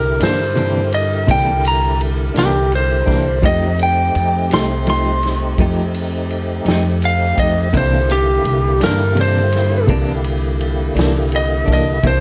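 A swaggering, soulful slow blues in 12/8 at 56 BPM, this excerpt in C mixolydian moves from C9 to F9 and back. A bright, twangy, slightly broken-up lead guitar solos up front throughout, over a fat tonewheel organ holding sustained chords through a slow rotary speaker with overdrive, chorus vibrato and key click. Beneath, a woody, dark upright bass sits up front, while from 0.2 s a clean, hollow-bodied semi-hollow electric guitar with tremolo and a natural vintage kit with dark cymbals and a punchy kick join, all under light reverb and the worn, warbling pitch drift of old cassette tape.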